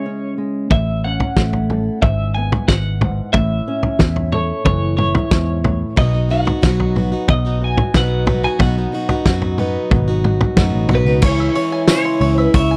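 Over a straight 4/4 pulse, this nostalgic indie folk excerpt builds steadily from a sparse opening into a fuller arrangement. A bright, twangy twelve-string electric guitar with tremolo carries the melody from the first moment, joined by a woody, boxy fingerpicked ladder-braced acoustic guitar with old strings. At 0.7 seconds a loose drum kit enters with a fat snare, punchy kick and gritty, saturated tone, sitting up front, and a dark, round, foam-muted electric bass comes in at the same moment. A picked, swing-style plugged-in acoustic guitar adds another accompaniment layer from 6.0 seconds. As the chords return to C#m at 11.2 seconds, a mellow, distant French horn with light vibrato enters on a second line, while a percussive bluegrass banjo with slapback echo plays arpeggios and a jingly tambourine touches in briefly from the background. The small room and close, dry 1970s-style sound give the piece an intimate, vintage character.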